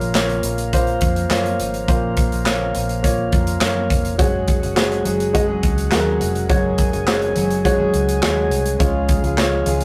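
Hopeful and warm, this piano-driven pop excerpt at 104 BPM in 4/4 sets a natural-sounding baby grand piano over smooth, key-clicking tonewheel organ chords through a slow rotary speaker, a dark, round, foam-muted fingered electric bass and a polished, up-front studio drum kit with punchy kick, snare, hi-hat and handclaps, while a full-bodied fingerpicked steel-string acoustic guitar riff joins in the background at 4.2 s as the harmony moves from Bb minor through Gbsus2 to Db, all caught in a rough rehearsal-room recording with moderate reverb.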